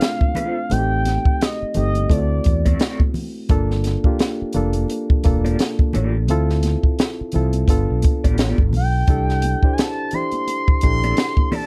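A dry cocktail drum kit with a punchy kick and high-tuned snare sits up front in this smooth, soulful neo-soul R&B excerpt at 86 BPM in D minor with a swung 16th feel, joined by a round fretless bass from 0.7 seconds, reedy electric piano chords, a slightly broken-up, lo-fi guitar with tremolo through a small old amp, very quiet damped congas, and a mellow sawtooth-and-triangle lead with portamento, vibrato, chorus and slapback echo that sings at the start and returns at 8.8 seconds, all in a dark, close production.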